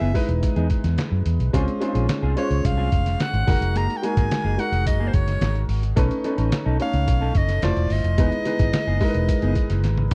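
A dry, close studio sound in a 1970s style frames this short, glossy slice of polished 1980s jazz-funk pop at 108 BPM in a straight 4/4, breezy in mood as the harmony moves from Emaj7 through Dbmaj7, Gb69 and Cb9. A bright, forceful soprano saxophone carries the jazz-style solo melody with light vibrato over an intimate grand piano with audible action noise and subtle chorus, while a dark, clean electric guitar plays a background riff through lush chorus. Up front sits a round, foam-muted fingered bass, joined by a gritty, pitched-down sampler-style drum kit with a thumpy kick, which closes on a fill at 9.8 seconds.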